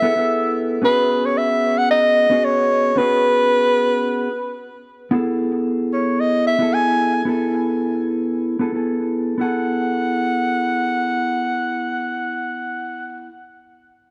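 Chillout excerpt at 112 BPM with a light sixteenth-note swing and a wistful, relaxed mood, where a breathy soprano saxophone carries an intimate, whispered jazz melody with light vibrato and subtone over a mellow, dark, clean fingered electric guitar softened by a low-pass filter, whose filter sweep runs from 5.1 to 9.4 seconds, both voices trailed by delay in a lush hall reverb as the harmony moves from F#m11 through Bsus2 to B7sus4.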